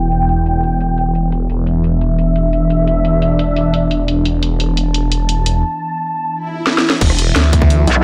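A straight 4/4 pulse at 174 BPM drives this tense, aggressive fragment of dark technical drum and bass in E minor, where a swirling, phased and detuned saw bass and a resonant, evolving pad pump alongside a cracking electronic kit, a filter sweep and an electronic swell rise to a drum fill, and at 7.0 seconds the drop lands with an overdriven, tight electronic kick before a metallic, wobbling FM bass bursts in at 7.9 seconds.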